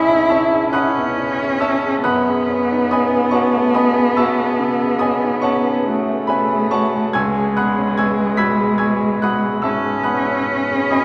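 Rubato 12/8 at 47 dotted-quarter beats per minute gives this hazy, mysterious impressionist duo in F# dorian a drifting pulse, as a bowed cello sings the melody with vibrato and portamento over a clear, intimate baby grand whose long sustain and audible action noise carry chords from C#m7 through F#madd9 to C#7sus4, all bathed in a cavernous cathedral reverb in this short fragment of a longer classical piece.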